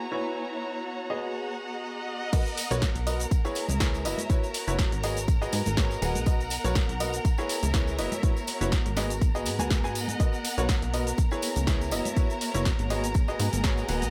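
A euphoric, feel-good piano house piece cut from a longer work, where a clear, woody upright piano riff with vintage 12-bit sampler grit and delay rides over rich chamber violin chords and a dark, expressive studio string texture, all pumping against the beat, until the drop at 2.3 seconds brings in a punchy layered kick, a tape-toned analog drum machine with snare, hi-hat, cabasa and crash, background tambourine and congas, and, from 2.7 seconds, a funky, plucky analog bass.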